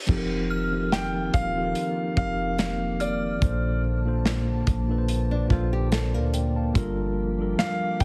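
Heavily compressed with a radio-like sheen and light reverb, this moody, late-night contemporary R&B excerpt pairs a mellow tine electric piano and a dark, smooth studio drum kit up front over a deep, boomy 808-style bass, while a glassy, warbling FM pad sits in the background, an inharmonic synth chime rings briefly, a clear, intimate grand piano carries the melody with audible action noise and tape echo, and woody fingerpicked nylon-string guitar arpeggios appear from 5.3 to 6.7 seconds.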